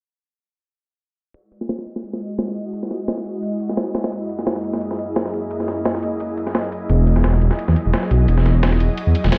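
Uplifting and lush, this liquid drum and bass excerpt in E lydian at 173 BPM with a light 16th-note swing opens at 1.3 seconds with a gritty, compressed breakbeat kit of ride cymbal and medium-tuned snare up front under a filter sweep, a layered electronic hi-hat in the background, and from 2.1 seconds an ethereal, airy chorused pad sustaining Emaj9 and F#13 chords, before a deep, rumbling detuned saw bass arrives up front at 6.9 seconds.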